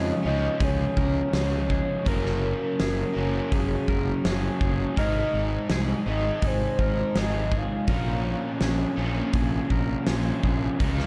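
A straight 4/4 pulse at 82 BPM drives this dreamy, hazy shoegaze and dream-pop rock excerpt, with a huge arena drum kit arriving at 0.6 seconds, its fat snare, punchy kick and hi-hat ringing in a big, natural room. Up front, a fuzz-drenched fingered bass anchors the Db, Gbadd9, Abadd9 and Bbm7 progression, while in the background a dark, compressed overdriven guitar and a hollow-bodied overdriven semi-hollow guitar with reverse reverb play riffs, and a clean, twangy guitar picks arpeggios through chorus and slapback echo. Above them, a full, round synth lead layered with a sub octave sings the melody through chorus, tremolo, vibrato and slapback echo until 9.0 seconds, all set in a dark, warm production with light reverb.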